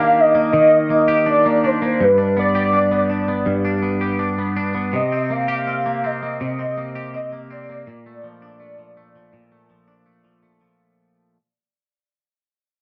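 A velvety, sawtooth-based synth lead carries the melody in this laid-back, sunny indie pop excerpt at 82 BPM, its smooth, sustained tone thickened by ensemble chorus and tape echo until it drops out at 10.0 seconds. Underneath, an up-front, twangy electric guitar plays clean, picked, compressed accompaniment through lush chorus and a vibrato effect, lingering until 11.4 seconds. The chords move from Ebmaj7 through G and Cm7 to Bbmaj7, all within a dark, warm production with a wet studio reverb, while the whole passage fades out over its first 10.8 seconds.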